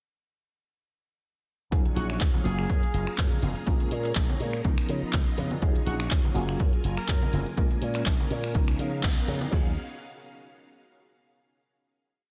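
Funky and groovy, this short filtered disco house piece settles into a swung four-on-the-floor pulse from 1.7 seconds, with a punchy electronic kick sitting up front and an analog drum machine supplying closed and half-open hats, handclaps, finger snaps and a crash. Maracas and congas ring in the background with hard hands, while a growly, bright slap bass with an envelope filter jumps between octaves under tube saturation, pumping against the kick beneath a low-pass filter. A barky, reedy electric piano holds drop-voiced chords with syncopated pushes, colored by overdrive, tremolo and phaser, and a lush vintage string machine pad adds sustained chords with ensemble chorus over a cycle of Ebm11, Gbmaj9, Bbm7 and Db13. A clear horn section with light vibrato plays short pop-style phrases from 2.0 to 7.5 seconds, filtered and pumping like the keys and strings. The band hits an accent at 9.0 seconds before the groove resolves onto a final Ebm11 chord at 9.5 seconds, all wrapped in dark, warm production with digital ambience.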